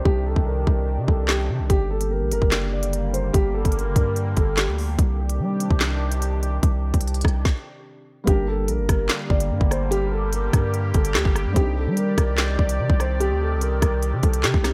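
A dark concert grand piano with analog delay and a sweeping, detuned sawtooth pad with chorus open this menacing, cold drill fragment in G minor at 146 BPM, felt in half-time. An electronic kit with a hard-clipped kick, a woody snare, crisp hats, claps and rim clicks arrives up front almost at once, alongside a deep, sine-toned 808 bass. The boxy grand, with audible action noise, falls away at 5.0 seconds and returns at 8.3, while a very quiet felt-muted upright piano enters at 8.2 with soft, short-sustained accompaniment over the alternating Cmadd9 and Gm chords, all under light reverb.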